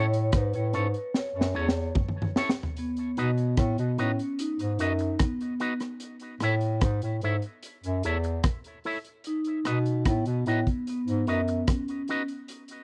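A mellow bass clarinet carries the low end of this laid-back roots reggae piece, sitting up front with a soft attack, light vibrato and scooped, jazz-style notes that still sound a little distant and roomy. A crunchy breakbeat drum kit plays hi-hat, kick, rim click, snare and toms, with a punchy kick, a high-tuned snare and a gritty, saturated tone whose rolled-off top keeps it dark and smooth; a drum fill runs from 1.1 to 2.8 seconds. Over this, a vibraphone played with soft mallets and the motor off takes the melody, its metallic, ringing tone close-miked and full, with tape echo trailing behind. An electric guitar provides accompaniment through an envelope filter, clean, picked and twangy, with a warbly pitch drift and its own tape echo. The harmony rocks between two chords, and a brief opening section gives way at 2.8 seconds to a longer second one. The sound is a dry, close 1970s-style studio recording with a touch of reverb, and the passage is cut from a longer piece, leaving a warm, easygoing mood.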